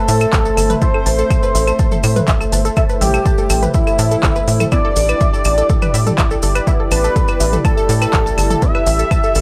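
This melodic techno excerpt runs at 123 BPM in A minor with a hypnotic, driving mood. A thick, detuned sawtooth unison lead carries the melody over an airy, dreamy second lead in the background, a dark, moody analog pad holding sustained chords, a lush unison pluck playing arpeggios and muted, phased dub chord stabs, all pumping with the sidechain as the harmony moves from Am to Em7 at 4.7 seconds. Underneath, a tight, up-front sequencer bass with tube saturation, an overdriven techno kit of claves, handclaps, hi-hat and toms, a grainy cabasa and a punchy analog kick drum from 0.3 seconds drive a dry, gritty hardware sound.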